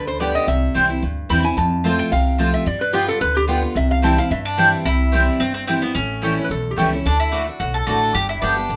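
A metallic, nasal lap resonator guitar played with a steel bar solos through the first 4.9 seconds of this lively, rustic, swung bluegrass excerpt, over a bright, full-bodied picked acoustic guitar, a woody, thumpy pizzicato upright bass and round mandolin stabs, while a mellow second mandolin takes up the melody from 4.5 seconds and the resonator guitar drops out at 7.0 seconds, all set in a moderate studio reverb.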